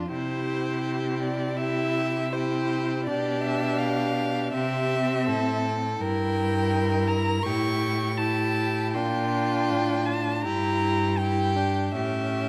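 Elegiac and melancholic, this slow romantic movement for string quartet unfolds with a rubato feel, cut from a longer piece. A single violin carries the melody high in its register, its rich tone shaded with vibrato for a smooth, even, singing line. A second violin, equally rich but more expressive and touched by portamento, plays a supporting line beneath it, while the viola fills in the accompaniment with a warm, vibrato-laden sound touched by its own portamento. The cello anchors the bass with a clear, intense voice and light vibrato, sitting close and up front in the mix. Harmonies drift from C through G/B toward diminished colour and an A7, then to Bb, and end on A7 at 11.9 seconds. Close, detailed microphones catch every bow stroke, set within a moderate scoring-stage reverb that lends the quartet a gentle sense of space.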